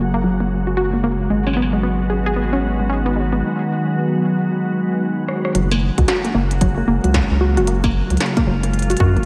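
IDM with a playful, glitchy mood, this short excerpt is cut from a longer piece and moves with a swung sixteenth-note feel, steeped in a dreamy, reverb-soaked hall ambience. A glassy FM pad holds sustained chords up front with ensemble chorus, moving from F#add9 to G#m7 at 1.3 seconds and back to F#add9, while a warbling, lo-fi pluck with a vintage, detuned character spins arpeggios through chorus and tape echo. Beneath them, a round analog bass sits deep and mellow, its wave-folded tone evolving over the course of the passage. A very quiet bubbling texture of random filter steps hovers faintly on a high F#5 until 3.4 seconds. An industrial drum kit with clanging snare, crisp hats, rim clicks and struck metal, filtered and run through analog delay, appears briefly near 1.5 seconds, then returns with a fill at 5.3 seconds, and a heavy electronic kick joins in the background at 6.0 seconds, both kit and kick re-recorded in a large room.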